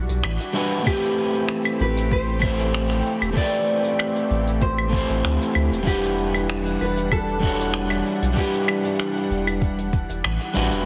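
A straight 4/4 groove of soft brushed claves, finger snaps, hi-hat and shaker, joined at 0.9 s by a soft, tape-toned electronic kick, carries this relaxed, smooth sunset chillout piece, where a round sine sub bass sits up front beneath a lush, detuned sawtooth-and-square pad treated with chorus and phaser, a slightly broken-up, fingered electric guitar adds delayed accompaniment, and a full-bodied, fingerpicked nylon-string guitar with audible finger squeak plays the delayed melody over Em9 and Am9 chords, set in a spacious hall reverb with a heavily compressed, radio-like sound.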